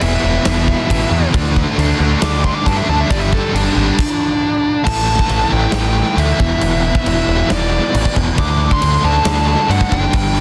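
Heavy and menacing, this hard rock excerpt at 136 BPM in 4/4 features a dark, smooth overdriven lead guitar soloing until 4.8 s over a growling, round, overdriven bass and a huge arena drum kit with punchy kick and bright cymbals up front, while a crunchy guitar with tremolo and a high-gain distorted guitar that drops out at 4.0 s play riffs in the background alongside a very quiet, double-tracked sludgy guitar, all in a dense, heavily limited modern master.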